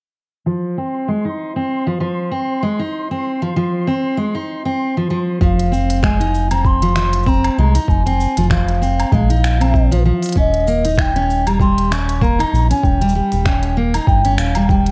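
A fingerpicked steel-string acoustic guitar opens this hopeful, playful folktronica piece at 0.5 s with full-bodied, up-front arpeggios under a filter sweep and a cassette-tape haze, while a grainy, flickering granular texture hovers in the background. At 5.4 s a hollow, distant baroque flute takes up the melody with vibrato and analog delay, joined by a round, dark analog bass, a muffled, thumpy pitched-down kick, and an overdriven electronic kit of cabasa, finger snaps, smooth hi-hats and woodblock. The swung 4/4 groove moves over chords from F7 to Fm7 and Eb7, all carrying the light reverb and soft, dulled top of a home cassette recording.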